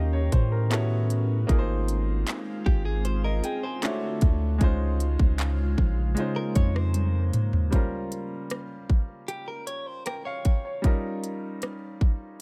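Dry and up front, this moody, longing contemporary R&B excerpt moves at 77 BPM in Bb dorian. A clear baby grand piano carries the chords, joined by a glassy, ethereal FM pad with ensemble chorus and its own reverb, a deep, mellow sine-toned 808-style bass, and a crisp electronic trap kit of hard-clipped kick, hi-hats, handclaps, rim clicks and toms. A clean, direct-recorded electric guitar enters at 2.7 seconds with compressed, picked arpeggios drenched in lush chorus and delay, and a drum fill leads to the second section at 7.7 seconds, where the pad and bass have dropped away and the harmony turns from rich extended chords to a dark Bbm69.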